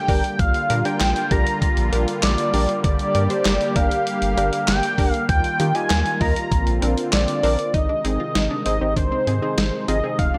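Upbeat and bright, this synth-pop excerpt at 98 BPM in 4/4 sets a bold, detuned octave-doubled lead with phaser and vibrato over a smooth, tremolo-tinged analog pad, a punchy, funky polysynth comp, a round, deep analog bass and a gritty, up-front sampler-style drum kit with gated reverb, thumpy kick, handclaps, hi-hat and snare, moving through Bb6, Gm, Ebadd9 and Bbadd9 before shifting to Ab at 7.7 seconds, where a warm analog pluck with slapback echo slips into the background with arpeggios.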